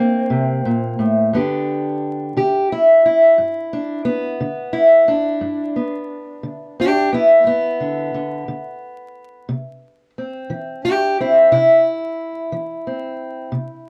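A fingerpicked steel-string acoustic guitar, with the boxy, dark voice of a parlour instrument, sits up front and carries this short acoustic country blues passage entirely alone. The mood is gritty and swaggering, moving at a slow 59 beats per minute in 12/8 with a straight feel, in G major. The guitar ranges from G2 up to G4, opening on a C7 chord before settling onto G at 1.3 seconds and moving to C at 9.5 seconds. A moderate small-room ambience surrounds the playing, and the production is warm with a coat of vinyl crackle. Cut from a longer piece, the clip runs just under 14 seconds.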